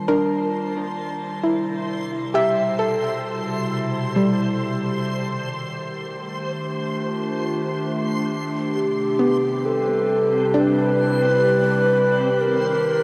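A hollow, airy alto flute, close-miked and touched with tape echo, enters at 8.8 s to carry a short melody through this weightless, peaceful ambient excerpt at 66 BPM, where a warbling, nostalgic tape-like pad fades in with detuned sustained chords, a soft, round pluck with analog chorus and tape echo spins gentle arpeggios, and a reversed, swelling granular texture fades in with a bright, dreamy glow, the dark production bathed in a shimmer reverb with an 8.0-second tail as the harmony drifts between Ebmaj9#11 and Cmaj7.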